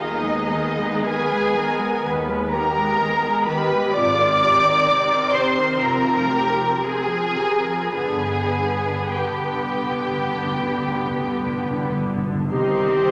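A wet recital-hall reverb surrounds this solemn, yearning fragment of a slow romantic orchestral movement, moving in 4/4 with rubato at roughly 50-65 BPM through chords from Abm/Eb to a closing Cm at 12.5 seconds. Muted, veiled string sections carry it throughout: a dark chamber violin section sings the melody up to D6, a lush studio violin section adds a second line, a rich symphonic viola section accompanies, and a distant cello section and double bass section supply the bass. Articulate timpani struck with hard mallets enter with a fill at 8.0 seconds, and a mellow, up-front solo clarinet sounds G4 just before the cut.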